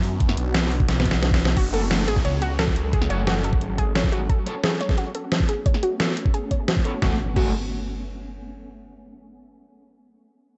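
A lightly reverberant, dark mix opens this mechanical, futuristic excerpt of technical drum and bass at 176 BPM in F# minor, where an up-front knocking kick and a dubstep kit of deep snare, metallic hats and crash drive a swirling, thick phased saw bass beneath a swarming, nasal drone, while from 1.6 seconds a warbling lo-fi pluck arpeggio and bright, double-tracked distorted guitar stabs move through filter sweeps, with a background downlifter and impact marking the change from Bm to F#madd9, Aadd9 and back.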